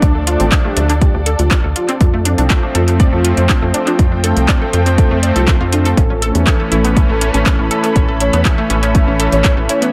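An overdriven electronic kick and a deep house kit of handclaps and metallic hi-hats open this driving, dramatic melodic techno excerpt alongside a tight, punchy sequencer bass, a lush detuned unison pluck playing arpeggios through analog delay, brassy, warbling analog pad stabs and veiled, muted strings, while a round, octave-layered synth lead carries the melody through chorus, tremolo and tape echo over a very quiet, moody ambient pad that enters at 0.1 s, with sidechain pumping on the lead, bass, pluck, brassy pad and strings as the chords move from Dm to F to A in an echo-heavy mix with light reverb.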